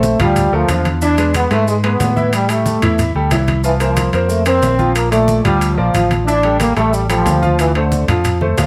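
Driven by a fast straight 4/4 salsa rhythm at 182 BPM in D minor, this fiery, danceable Latin cut opens with an up-front, bright trombone section carrying the melody with light vibrato over a brilliant, long-sustaining baby grand piano, a dark, round fingered electric bass, thick-skinned low-tuned congas in the background, grainy maracas and ringing, saturated timbales that enter at 0.2 s, with a drum fill arriving at 8.4 s, all under a light reverb.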